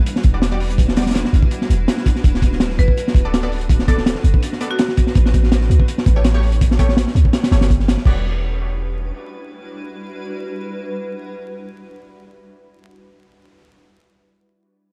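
A dark, crackling small-room sound with a vinyl haze frames this nostalgic, raw drum and bass cut, a jungle fragment lifted from a longer piece, moving at 165 BPM in E dorian with a light swing on the sixteenths. A crunchy, saturated breakbeat kit sits up front with a tight kick, high-tuned snare, hi-hat and dark crash cymbals, running from the opening drop until 8.1 seconds. Alongside it, a boomy 808-style bass with a sine core and a noise layer decays from each fast attack, while a cloudy granular pad holds blurred, slowly evolving chords through Em9, Bm7/D and A7 before returning to Em9. Bold, detuned sawtooth stabs in the manner of an orchestra hit punch through with reverb and dub echo, lasting past the other parts to the close at 12.4 seconds. Briefly, from 2.8 to 5.1 seconds, a woody marimba struck with hard mallets adds a bright melody in the background, roughened by vintage 12-bit sampler grit and trailing dub echo.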